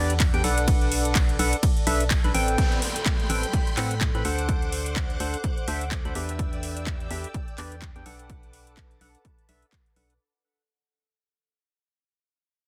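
A swung house groove drives this soulful, energetic piano house excerpt: a punchy, tape-warmed electronic kick sits up front beside a layered house kit of handclaps, metallic hi-hats and ride cymbal, while a dark, hollow FM bass and a percussive, ring-modulated organ stab with chorus and delay pump against the sidechain. A warbling, lo-fi pad hovers in the background through the opening drop, which closes with a band accent at 2.1 seconds. At 2.6 seconds, shimmering vintage string-machine violins enter under a filter sweep alongside a background downlifter as the dense, dry, heavily limited mix fades out.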